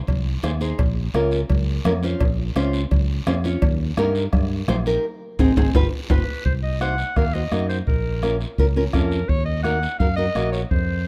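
A straight four-beat cumbia groove drives this fiery, danceable latin clip, cut from a longer piece, with a soft-beaten bombo ringing in a live room and high-tuned, thick-skinned congas played with soft hands sitting close and dry in the background. A raspy guiro scrapes throughout, while the ringing metal of the cowbell and timbales cuts through until it drops out at 6.2 seconds. Up front, a punchy, direct fingered electric bass anchors the low end beside a small, fingerpicked nylon-string guitar with fresh strings that supplies the chords. The full band hits an accent at 5.0 seconds, and a drum fill leads into a new section, where a bright clarinet with a smooth top enters at 6.1 seconds to carry a classical-style solo melody. The rough home demo mix carries a light studio reverb, giving the whole a lively, unpolished feel.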